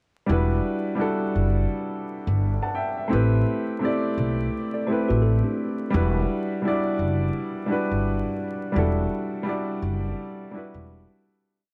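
An upright piano and upright bass open the piece together at 0.3 s, setting a nostalgic, reflective lo-fi hip hop mood with a lazy swung feel. The piano sits up front with an intimate, vintage tone, its action noise audible. It plays rootless voicings in a pushed chord rhythm with short fills, repeated like a sampled loop and colored by a cassette-tape character and a low-pass filter. The pizzicato bass is woody and growly, also up front, laying down a sparse line beneath the Em9 and Am9 harmonies. At 4.7 s a mellow tine electric piano slips in briefly in the background, its worn, slightly out-of-tune voice adding short fills in fourths, softened by a low-pass filter and trailed by analog delay. Light reverb, a dark, warm production and vinyl crackle wrap the whole piece, which fades out from 8.8 s.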